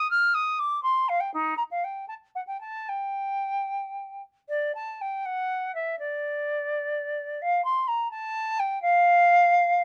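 A silver concert flute plays alone from the first moment in this brief excerpt of a baroque-style classical fantasia in G minor, solemn and introspective in mood. The pulse moves in a flexible 6/8 at about 72-85 BPM counted in dotted quarters, and the rubato lets the phrases breathe freely. The flute's tone is pure and metallic, with a crisp attack and an expressive vibrato, and its line ranges from Eb4 up to F6. After an opening passage, a second section begins at 4.5 seconds and continues until the flute stops at 9.8 seconds. Close, detailed microphones and very little reverb place the instrument up front, so every breath-shaped nuance of the playing comes through clearly.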